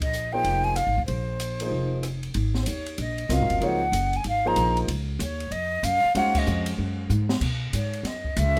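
Modal jazz at a swinging 189 BPM in Ab mixolydian, hypnotic and spiritual in mood, this brief excerpt puts a breathy, hollow flute with vibrato up front over a growly, woody pizzicato upright bass, while an intimate grand piano with audible action noise joins at 0.3 seconds. The studio drum kit sits further back, its dark cymbals, high-tuned snare and boomy kick driving the groove through suspended chords under light reverb. A band accent lands at 6.3 seconds, followed by a short drum fill just before a shift to Bsus2 at 7.4 seconds.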